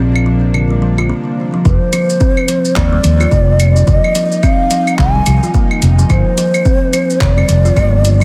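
Mystical and meditative, this short cut from a longer organic downtempo piece moves at 108 BPM in F dorian with a swung sixteenth-note feel. From the start a woody, ringing kalimba plays arpeggios through digital delay and shimmer reverb, over a fretless electric bass that sits up front, growly and bright, thickened with lush chorus and sidechain pumping. Behind them a tense, string-like drone holds sustained chords in the background, its detuned sawtooth tone carrying a noise layer, ring modulation, vibrato and a slow attack, pumping along and bathed in its own reverb and shimmer. A deep house kit of claves, handclaps, hi-hat and shaker enters at 0.2 seconds, overdriven and re-recorded in a small room, and after a brief break from 1.1 seconds a breathy, mellow low ney takes up the melody at 1.7 seconds, expressive and tongued with vibrato, trailed by tape echo and shimmer reverb. A deep, layered electronic kick joins at the same moment with its own overdrive as the harmony moves from Bbadd9 to an F7 chord with its third omitted and later to a rootless Ebmaj7/G, all within a light digital ambience and a dense, heavily limited modern master.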